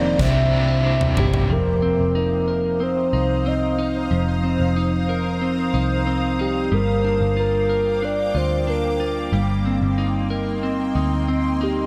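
Up-front clean electric guitar arpeggios, compressed and bathed in dub echo, lead this ethereal, blissful dream pop cut at 92 BPM, joined by a round, octave-layered synth melody with vibrato, a blurred, evolving granular cloud pad, and a dark, foam-muted picked bass. A crunchy overdriven guitar with tremolo sounds through the first 1.5 seconds, while a huge arena drum kit with a fat snare and punchy kick plays a background drum fill from 0.2 to 1.5 seconds, before the chords settle into an echo-heavy plate-reverb haze.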